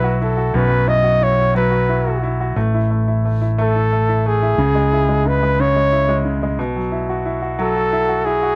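Aching and dramatic, this short cut from a longer six-eight pop ballad moves at 60 BPM in a straight 6/8 feel. A mellow flugelhorn carries the melody from G#4 to D#5, playing a close-miked, jazz-style solo with vibrato that sits up front. A clear baby grand piano gives polished, present accompaniment across its range from F#2 to F#4. Beneath them, a fingered electric bass adds a dark, amped, round and punchy low end between A1 and C#2. All three parts play throughout the 8.6 seconds over the chords Bsus4, A5, C#m and back to Bsus4. The sound is dry, with little reverb and an outdoor recording that captures none of a room's sound.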